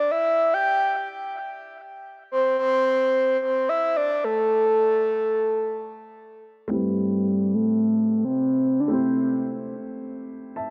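Late-night and deep, this amapiano fragment floats in free time in A minor, cut from a longer piece. A breathy, flute-like synth lead carries the melody from the start, sitting up front with a soft attack and sustained notes, its tone shaded by a sub octave, chorus, vibrato and digital delay and softened through a low-pass filter. For the first 6.7 seconds that lead sounds alone over a drop, before a grand piano enters at a lower level with an Am9 chord. The piano feels intimate and natural, its audible action noise adding a close, human texture under a filter sweep that runs to the end at 10.7 seconds. The lead stops at 9.7 seconds, leaving the piano in a small room with light reverb.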